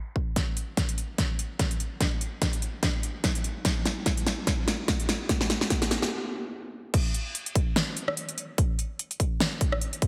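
Heavily compressed with a radio-like sheen and bathed in a lush hall reverb, this dreamy future bass fragment in a swung half-time feel pairs a punchy, up-front electronic kick with a layered big-room dance kit of huge snare, crisp hi-hats, rim click and crash cymbal, whose snare, hats and cymbals are low-pass filtered, as a drum fill drives the build-up until a stop at 6.1 seconds gives way to the drop at 6.9 seconds.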